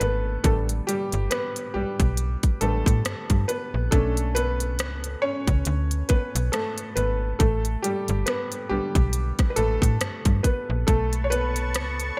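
A felt-muted upright piano, bass and trap drum kit open this 12-second excerpt together, setting a moody, late-night contemporary R&B groove at 69 BPM in 4/4 with a 16th-note swing. The piano carries a solo across the whole passage, its soft, intimate, vintage tone with short sustain sitting up front. Beneath it, a slap-like FM bass adds a snappy, metallic attack with a decaying digital edge. The electronic drums bring a hard-clipped kick, crisp hi-hats and rim clicks, dressed in gated reverb. The harmony moves through A9sus4, Bm9 and back to A9sus4 before landing on B7sus2 at 10.9 seconds, where a lush, detuned unison pad enters with chorus and sidechain pumping. Light reverb and a bright 1980s-style digital production frame the whole passage.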